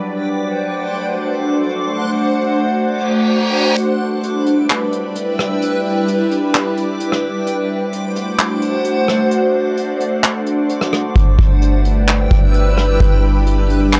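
Blissful and dreamy, this fragment of atmospheric cloud-rap drifts in a half-time feel. An ethereal, airy pad of detuned sawtooth and triangle tones holds sustained chords up front, softened by ensemble chorus, reverb and phaser and gently pumped by sidechain, while a bright, reversed granular texture swells behind it with its own reverb. An electronic downlifter and reverse cymbal sweep in just before the vintage brush drum kit enters at 3.8 seconds. The kit is acoustic, dark and smooth, with handclaps, hi-hat and rim click in a studio room, and its tight kick holds off until 11.2 seconds. At that point a deep, round 808-style sine bass lands up front on G and decays softly beneath the chords. Light studio reverb and a gritty cassette-tape grain give the recording a dry, hardware-worn character.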